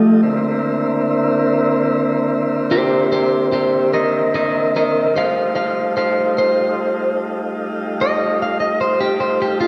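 An electric guitar at the edge of break-up carries the melody from 0.0 to 9.7 seconds, its picked, compressed tone sitting up front with a slightly broken-up grit as it ranges from A3 to F5. This is a slow blues in 12/8 at 49 BPM, counted in dotted quarters, with a straight feel and a gritty, laid-back mood. Beneath the solo, a tonewheel organ holds sustained chords between D3 and F4, its smooth, clean sound shimmering with vibrato through a slow rotary speaker. The harmony moves from C9 to F9 at 5.1 seconds. The whole performance is bathed in a wet concert hall reverb with a long 2.4-second decay, lending the church-like space a deep, spacious bloom. This short passage is cut from a longer piece.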